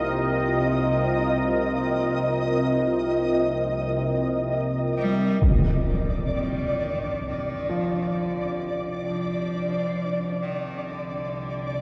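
Drenched in cathedral reverb and cassette-tape haze, this ominous, vast dark ambient drone fragment opens on a deep, moody pad holding Cm over a nasal, filter-swept organ-like drone and a flickering, grainy granular texture; at 5.0 s a biting, vibrato-laden solo cello begins singing through tape echo, and a huge impact at 5.4 s shifts the harmony to Cmadd9 as the pad gives way, with intimate concert grand piano arpeggios and audible action noise joining at 7.7 s.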